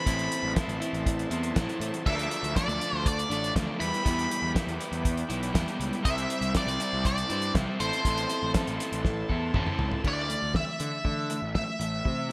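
Indie rock at 120 BPM in 4/4 with a cool, bittersweet mood, cut from a longer piece, where a dark octave-fuzz lead guitar carries the melody over a double-tracked fuzz guitar riff, a punchy overdriven picked bass, and a thuddy cloth-damped drum kit with a fat snare and gated reverb, while a reedy combo organ with light vibrato holds chords in the background until it stops at 10.0 s, just after a drum fill from 9.0 s, as the chords move from Am through Dm, Em7 and Cadd9 to Dsus2 in a bright 1980s-style digital production.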